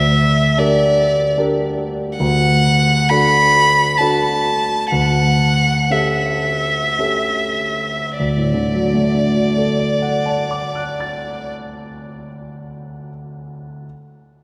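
A close, expressive solo violin with vibrato, soft attacks and portamento carries the melody up front in this warm, serene romantic classical fragment in 3/4, over a dark, mellow grand piano with deep bass; the rubato pulse slows from 1.0 to 8.2 seconds, and the violin falls silent at 11.5 seconds while the piano plays on alone to 13.9 seconds in a lush, reverberant church space.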